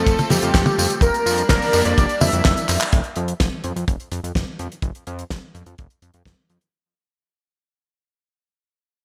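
Romantic and sunny, this italo disco fragment opens with a bold, detuned sawtooth unison lead singing the melody with vibrato through subtle chorus, cassette tape and delay, over a lush pad tinted by chorus and phaser in the background. A fat, filter-swept analog bass, a tight, dry kick up front and a damped 70s kit with a fat snare, handclaps, hi-hat, tambourine and toms in gated reverb drive a straight 4/4 groove, until a drum fill at 2.7 s and a band accent at 2.8 s clear away the lead and pad, leaving bass and drums to fade out from 2.9 s within a bright 1980s-style digital production and moderate plate reverb.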